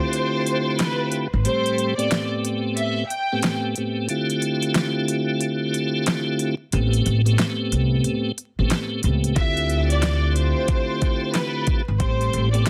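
A lightly overdriven tonewheel organ underpins this moody, dark boom-bap hip-hop excerpt, its piping, scooped tone turning over a slow rotary speaker with chorus vibrato, key click and a cassette-tape haze as it accompanies from start to finish. At 91 BPM in 4/4 with a swung sixteenth-note feel in D dorian, the harmony alternates between Dm11 and Am7. A lush violin section, focused yet distant with rich vibrato and tape echo, carries the melody from 0.0 to 3.6 seconds and returns at 9.4 seconds. An electronic, layered pop drum kit enters at 0.1 seconds with a knocking kick, fat snare and crisp hats, while a woody, thumpy pizzicato upright bass on steel strings makes a brief appearance at 1.3 seconds before settling in from 6.7 seconds. The dense, heavily limited master sits in light reverb under a layer of vinyl crackle.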